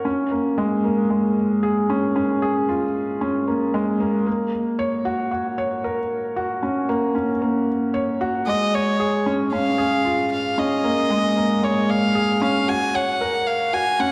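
Electronica with an intimate, melancholic mood, this 14.1-second fragment of a longer piece moves at 114 BPM in a straight 4/4, tuned to A4 = 439 Hz. A felt-muted upright piano carries a riff from the opening between Ab3 and Db5, its soft, mellow tone sitting up front with audible action noise from the thin felt, shaded by a low-pass filter and tape echo. At 8.5 seconds a single bowed violin enters with the melody, ranging from Db5 to Ab5. Its nasal, reedy gut-string tone and airy bow carry a period style, heard close and up front. The harmony moves through Bbm7, Gb/Bb, Bbm7 and Gb. A recital hall reverb with a 1.8-second decay wraps the piece in a dark, warm production.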